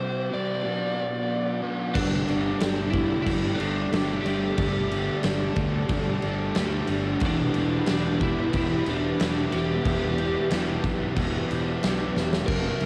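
A straight 4/4 pulse at 91 BPM sets this hazy, dreamy shoegaze and dream pop excerpt in E minor. A biting, overdriven lead guitar carries the melody over a dark overdriven riff guitar with reverse reverb, a thick fuzz guitar with lush chorus in the background, and a bright, warbling wavetable pad that sustains chords from Cadd9 and Bm through Gsus2 to Em. At 2.0 s a round, fuzzy fingered bass and a huge, punchy arena drum kit enter, the kit up front with a fill at 12.2 s, all colored by the lo-fi grain of a home cassette recording.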